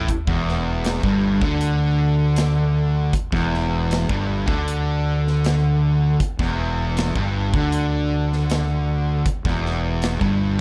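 Sludgy and heavy, this stoner and doom metal passage in E minor moves at a slow 79 BPM in a straight 4/4, cut from a longer piece and resting on an Em chord throughout its roughly 10.6 seconds. An up-front, double-tracked fuzz guitar drives the riff with picked, distorted tone, while a growly fingered electric bass, overdriven with tube saturation, sits beneath it. A big acoustic rock kit with a punchy kick, medium-tuned snare and hi-hat fills out the dark, warm production, which has light reverb and a small room ambience.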